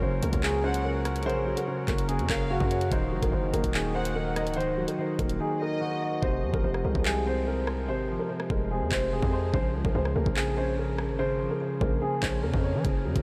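Cold, tense drill hip hop in F phrygian at 145 BPM with a half-time feel opens on two dark baby grand piano parts: an up-front, worn accompaniment and a mellow melody treated with lush chorus and digital delay. They sit over a heavy, saturated, distorted 808-style bass and a faint, vintage brass ensemble holding sustained chords, while a distant violin section adds an expressive, bowed second line with vibrato, portamento and delay. An up-front electronic drill kit with knocking kick, handclaps, rim clicks and hi-hats drops out at 5.4 seconds, and when the brass and violins stop at 6.2 seconds the kit returns with its hi-hats muted, all inside a dreamy mix soaked in huge ambient reverb.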